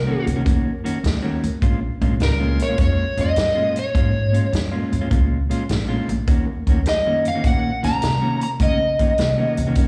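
An overdriven slide guitar carries the melody from the first moment, its gritty, fingered tone up front and thickened by slapback echo and analog delay as it moves between Bb4 and Bb5. This is a smoky, brooding electric blues shuffle in Bb minor at 103 BPM, swung in 4/4, cut from a longer piece. An upright bass plucks a woody, growly line underneath, while a mellow electric guitar plays a dark, clean riff with its own slapback echo. A vintage drum kit joins at 0.3 seconds with punchy kick, medium-tuned snare and hi-hat, its top end rolled off. The harmony moves from Ebm7 to Bbm7 at 1.6 seconds and back to Ebm7 at 6.3 seconds, all heard as a live gig through a club PA with reverb from the room.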